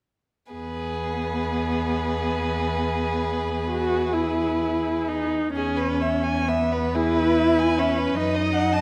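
At 0.5 s all four members of a string quartet begin together in this lyrical, warm slow romantic movement, cut from a longer piece and flowing in 6/8 with a free, rubato feel. The first violin carries the melody with a rich, vibrato-laden tone, bowed smoothly and evenly, while the second violin traces a warm second line with a smooth top to its sound. Close and up front, the viola supplies a dark, expressive accompaniment with soft attacks and sliding portamento, and the cello anchors the bass with a focused, vibrant bowed tone. A new section arrives at 5.6 s, and at 8.2 s the harmony shifts to a B chord over F# in the bass. The quartet sits in a moderate recital-hall reverberation that lends the blend a gentle sense of space.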